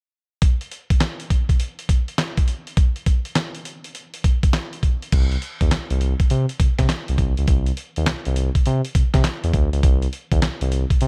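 A dusty, sampler-style drum kit opens this bouncy, punchy new jack swing groove, its thumpy kick, fat snare, handclaps, hi-hat and crash cymbal sounding gritty, compressed and tape-warm, set up front after being re-recorded in a large room. The drums play alone from 0.4 seconds, carrying a swung sixteenth-note feel in 4/4 through the opening section. At 5.1 seconds a smooth synth bass joins, its sawtooth and triangle tones mellow and sustained, with a fast attack, and it sits up front in a low register. Drums and bass continue together until the cut at 11.1 seconds. Apart from the roomy character of the drums, the mix is dry, giving this short R&B fragment from a longer piece a close, direct presence.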